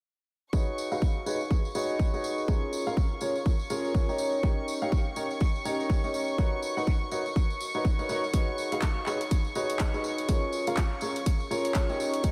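An upright piano riff, woody and up front, opens this uplifting, euphoric piano house excerpt at 123 BPM in Db mixolydian, colored by subtle chorus, a low-pass filter and analog delay, alongside a punchy electronic kick, a vintage tambourine and a dark, floating string section holding soft-attack sustained chords, with piano and strings both pumping to the sidechain. The swung groove moves through Db9sus4, Bbm7, Eb7 and Cbmaj9, and at 8.3 seconds a tape-warm analog drum machine adds handclaps and hi-hat. A lush hall reverb soaks the mix in a dreamy haze.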